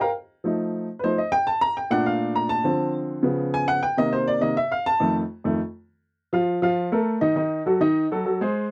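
Jazz in a sunny, lively mood, this short passage cut from a longer piece features a lone, warm-toned vertical piano playing for its full 8.7 seconds. The piano has a woody tone with short sustain and sits up front in the sound, spanning a broad range from deep bass up to gleaming high tones. Its harmony moves through colorful seventh chords, including F7, Bbmaj7, Dm7, Db7 and Cm7, before turning toward an Ebdim near the close. The piano carries the opening stretch alone until 6.2 seconds, where a new section begins. A light reverb surrounds the instrument, yet the overall recording feels dry and close, like a 1970s-style studio session.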